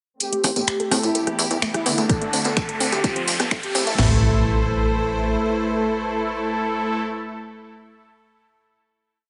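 This short, dark and driving melodic techno piece in A minor moves at 127 BPM in a straight 4/4. It opens at 0.2 s on a build, with a fat, detuned analog synth brass riff carrying the melody over a rich, smooth bowed string section sustaining chords in the background. A filter sweep runs across the strings, and finger snaps, metallic hi-hats and rim clicks tick alongside a jingly, vintage tambourine playing hand-played sixteenths. A woody, nasal wave-folded pluck soon adds a mellow sixteen-step arpeggio under its own filter sweep, and a punchy, tube-saturated analog bass gallops in sixteenths. Bold, bright brassy pad stabs echo up front in power voicings, an electronic riser climbs from 1.5 s, and at 2.1 s a punchy four-on-the-floor kick, cracking snare and crash cymbal drive the build home. The chords move from Am7 through Em, D and F, and from 4.0 s the track settles onto a final A minor chord. 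The brass, strings and pad ring on in a moderate scoring-stage reverb, all pulsing with the sidechain pumping.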